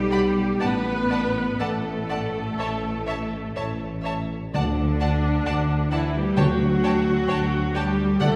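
Heard from further back in a reverberant scoring stage, this brief cut from a slow, serene and tender romantic orchestral movement unfolds with rubato, as a clear, intense violin section carries the vibrato-laden melody above a second violin section's expressive line and a rich, even viola section up front, while a cello section sits smooth in the background over bowed double basses and a mellow, soft-attacked tuba, until very quiet, articulate timpani on hard mallets enter at 4.5 seconds.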